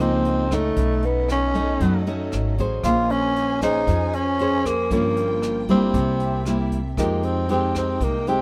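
A straight 4/4 bossa nova groove carries this smooth, melancholic excerpt, where a raspy, breathy tenor saxophone growls the melody up front over fingerpicked nylon-string guitar with audible finger squeak, woody pizzicato upright bass, a lush bowed string section in the background and a jazz brush drum kit with a boomy kick that joins at 0.2 s, with little reverb.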